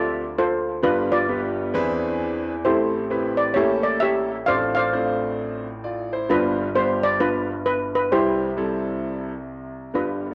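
Uptempo gospel at 132 BPM in C major with a swung eighth-note feel, this reverent, soulful passage is cut from a longer piece and pairs a shimmering, dark-toned steel pan on the lead melody with a woody, polished upright piano accompaniment, both up front and playing throughout. The pan carries plate reverb and analog delay, while the piano rings with long sustain under its own plate reverb, and both share a cassette-tape character in a small, homey room. The harmony moves from Dm7 through G7, E7b13, Am7, A7b9, Dm7/A and G7 before settling on C at 8.1 seconds.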